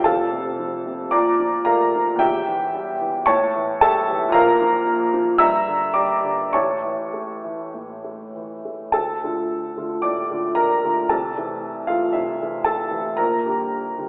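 Romantic classical character piece for solo piano in D minor, stormy and bittersweet, moving with rubato in 4/4 at roughly 99-118 BPM, where a woody, up-front upright piano tuned to A4 = 439 Hz spans E1 to E6 across this 14.1-second fragment of a longer work, shifting into a new section at 8.9 s, all heard through a wet recital-hall reverb and a telephone-like sound.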